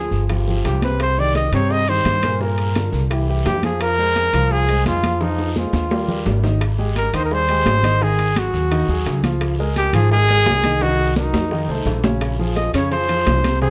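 Recorded with close, detailed microphones and light reverb, this sultry, sophisticated Afro-Cuban jazz excerpt in F minor moves at 171 BPM, as a mellow, breathy solo trumpet with light vibrato and scooped notes sings up front through plate reverb over a deep-bassed concert grand piano and a woody pizzicato upright bass, while bright, damped congas, ringing metal-shelled timbales, a raspy guiro and tight, distant bongos drive the groove, with drum fills at 5.2 and 10.8 seconds.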